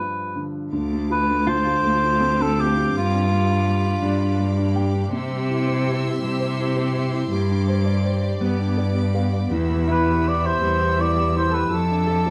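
Heard in a moderately reverberant large studio, this heartfelt, intimate acoustic folk-pop ballad excerpt moves at 55 BPM in 6/8, with a mellow, distant cor anglais singing the melody up front at the start and again near the close, a dark upright piano with audible action noise and long sustain accompanying throughout, a woody bowed cello with vibrato carrying the bass from 0.7 s, soft sul tasto chamber strings holding sustained chords, and a clean, compressed electric guitar with tremolo playing arpeggios in the background over chords moving from Dm7 through G7 and C to Em.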